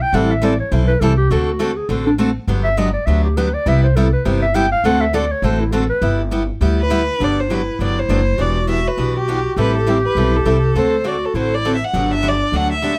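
Close, detailed microphones and light reverb give this swinging, charming excerpt of gypsy jazz in G major at 203 BPM an intimate feel, with a woody, thumpy pizzicato upright bass on gut strings and a bright, picked steel-string acoustic guitar with fresh strings and finger squeak sitting up front. A warm, close-miked clarinet takes a jazz-style solo through the opening 7.2 seconds, full of vibrato, subtone and scooped notes, over a progression that moves through Am7, D7 and Gmaj7. A single bowed violin enters at 6.8 seconds to carry the melody, expressive and smooth-topped with vibrato and portamento, as the clarinet continues in a second line.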